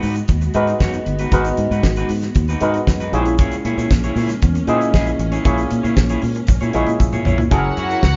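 Disco at 116 BPM in 4/4 with a straight, danceable feel and a glamorous mood, cut from a longer piece. A damped 70s drum kit sits up front with a fat snare, tight kick, hi-hat and toms, while a round, foam-muted fingered electric bass plays alongside it. An overdriven clav through a combo amp adds stringy, percussive accompaniment with an auto-wah, and a picked, twangy electric guitar at the edge of break-up also plays accompaniment, over sustained chords from a lush, focused string section in the background and a grainy egg shaker. The harmony moves from G#m7 to A#m7b5 at 3.1 seconds, with a clav fill and then a drum fill leading to F#7 at 7.5 seconds, where a reedy, gut-string violin section with light vibrato enters on a second line. The band sounds as if playing live in one room, with moderate studio reverb and a dark top end.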